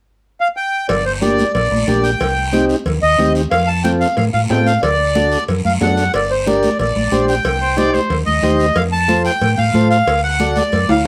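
A reedy, smooth accordion opens this driving, danceable cumbia excerpt in G minor at 183 BPM at 0.4 s, joined at 0.9 s by a dark, round hollow-body electric bass up front, thick-skinned high-tuned congas in the background, ringing cowbell and timbales and a raspy guiro, with a mellow, overdriven combo organ adding light vibrato accompaniment from 1.2 s, a clear, punchy trumpet with scooped notes stepping in briefly at 7.6 s, and a drum fill closing things out, all set in a small room with a faint mains hum.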